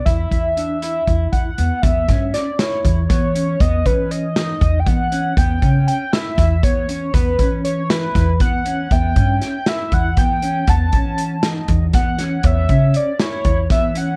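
Set in a driving, straight-feel 7/8, this tense progressive instrumental, cut from a longer piece, rides on a punchy, up-front vintage drum kit of kick, snare and hi-hat and a woody pizzicato upright bass. A shimmering, retro pulse-width synth lead carries the melody with chorus and vibrato, while a dark, slightly broken-up electric guitar plays fingered arpeggios through harmonic tremolo and analog delay. At 8.9 seconds a delicate, bell-like celesta enters in the background with a soft second line, all within a dark, warm studio reverb.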